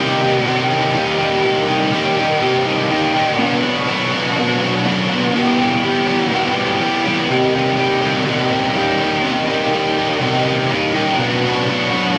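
Wistful and dreamy, this short rock passage, cut from a longer piece, is carried by a single overdriven electric guitar playing solo from 0.0 to 12.2 seconds. The guitar is picked and double-tracked, sitting up front with a warm, gritty tone that ranges from E2 up to G4. A subtle chorus and an analog delay lend the part a hazy shimmer, while a moderate plate reverb with a 2.6-second tail gives it a soft, lingering space. The harmony drifts from Cm to Bm, then to Em, and back through Cm to Bm. In straight 4/4, the passage holds a single reflective section that feels like a fragment of a larger, dreamy song.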